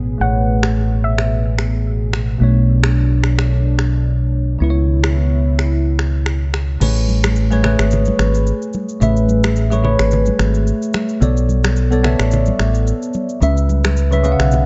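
A soft, round pluck melody opens this romantic, joyful afrobeats excerpt at 109 BPM in A major with a light 16th-note swing, alongside a bell-like electric piano with phaser, a smooth analog pad with chorus, and a dark, up-front fingered electric bass moving through Amaj9, Bm9 and C#m7 under a filter sweep, before an electronic afro-pop kit of crash, finger snaps, rim click and shaker enters at 0.6 seconds and bright, damped congas join at 6.8 seconds as the pad drops out and the kick is muted, all in a dry mix with little reverb.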